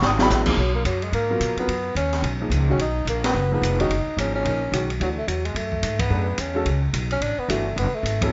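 A drum fill opens this brief, searching modal jazz excerpt, with the upright bass and baby grand piano already sounding beneath it in a brisk swing. At 0.6 seconds a breathy tenor saxophone takes the solo melody, mellow and subtoned, with light vibrato and scooped notes that give it a hypnotic quality. The pizzicato bass sits up front, woody and thumpy with gut-string depth, while the piano comps in a natural, warm voice under the horn. The acoustic kit has dark cymbals, a high-tuned snare and a boomy kick, set mid-forward in a studio room with a rolled-off top. The band hits shared accents around 3.2 and 6.0 seconds, and the whole thing carries light reverb in a rough, muffled home-demo mix.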